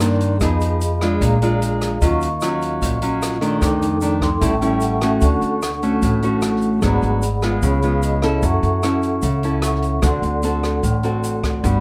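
A fingerpicked nylon-string guitar sits up front in this sophisticated, romantic bossa nova excerpt at 150 BPM, joined by a dark, ringing vibraphone with soft mallets and fast motor vibrato that adds fills at 4.0 and 7.8 seconds. A woody, thumpy pizzicato upright bass and an open jazz kit with a boomy kick, hi-hat and rim click carry the groove, while a grainy tube shaker stays in the background. The harmony moves through rich jazz chords before settling into D major at 5.2 seconds, all in a dry, natural studio room.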